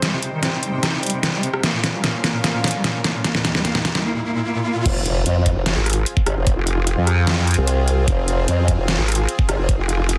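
A dense, heavily limited modern mix with light reverb frames this heavy, menacing half-time wobble dubstep fragment. A reedy, bowed cello carries the melody through a low-pass filter and digital delay over a lush, detuned supersaw pad pumping under sidechain, while an up-front dubstep kit with deep snare and metallic hats drives a drum fill through the build-up. A very quiet riser and impact arrive at 2.6 seconds; the drop at 4.9 seconds brings a knocking electronic kick and a saturated formant-sweep wobble bass with chorus and overdrive, joined at 5.8 seconds by a nasal, resonant vowel-sweep wobble bass.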